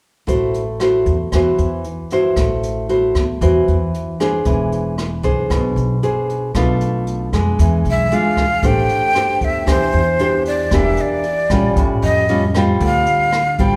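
A fingerpicked classical nylon-string guitar sits up front from 0.3 s alongside a woody pizzicato upright bass and a distant brush drum kit with a punchy kick, hi-hat and rim clicks under a rolled-off top, setting a smooth, melancholic bossa nova groove at 115 BPM in A dorian. At 7.9 s a breathy metal flute enters up front with vibrato, tongued chiff and an unsteady tone, carrying the melody as the music shifts to A minor at 8.6 s over chords such as Am7, Em7b5 and A7alt. A wet recital hall reverb gives the performance the spacious ring of a church or concert hall.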